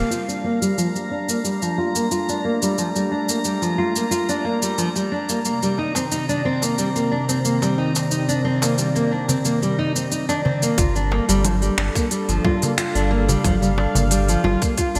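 Organic downtempo with a hypnotic mood, this piece is built on a fingerpicked nylon-string guitar playing arpeggios up front, its fresh strings and finger squeaks passing through a low-pass filter sweep and digital delay. Beneath it, a smooth, detuned sawtooth pad holds soft-attack chords with chorus and sidechain pumping, moving from Gm7 to Cm9. Above, a glassy sine texture of drifting overtones floats high with its own reverb until 10.8 seconds. An electronic drum kit with crisp hats, congas, finger snaps and shaker gives a tape-toned, small-room pulse, and a metal-shelled darbuka played with soft hands sits close and dry in the background from 5.8 seconds. At 10.8 seconds a round, deep sine sub bass returns up front with sidechain pumping, joined by a tight electronic kick as the harmony settles back on Gm7. A lush hall reverb and bright 1980s-style digital production frame this section cut from a longer piece.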